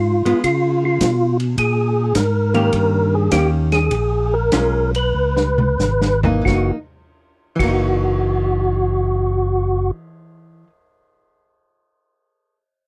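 Swinging and bluesy, this short soul jazz organ trio fragment in F# mixolydian eases from about 105 down toward 89 BPM between 1.6 and 6.5 seconds, as a mellow, round, up-front percussive tonewheel organ with key click and fast rotary speaker carries the melody over a fat, lightly overdriven tonewheel organ bass on slow rotary, a dark, compressed hollow-body archtop guitar comping through chords like C#7, A#m7 and D#7 before landing on F#6, and a vintage drum kit with a punchy kick and dark cymbals in a small pumping room playing a fill from 5.2 seconds and dropping out at 7.7, all quite dry.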